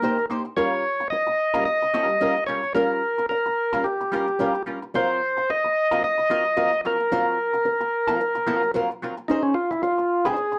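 This funk groove at 110 BPM swings its sixteenths with a cool, funky feel, moving from Cm7 through Eb9 and Gbmaj7#11 to Dbmaj9 in a short section cut from a longer piece. Up front, a percussive tonewheel organ carries the melody with a full, lightly overdriven tone, key click and third-harmonic percussion, and takes a brief solo from 9.3 seconds. A clean, picked hollow-body jazz guitar with compression and wah supplies the accompaniment, set in a dark production with a short, wet studio reverb.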